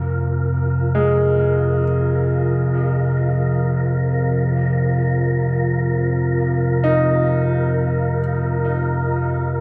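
Drifting in free time, this cavernous, desolate dark ambient drone passage is cut from a longer piece and steeped in a cathedral reverb. A deep, ominous, rumbling drone sits up front throughout, while an airy, breathy wind-like tuned noise texture hovers above it. A brilliant, intimate grand piano plays arpeggios through a diffuse ambient delay, its action noise audible in the mix.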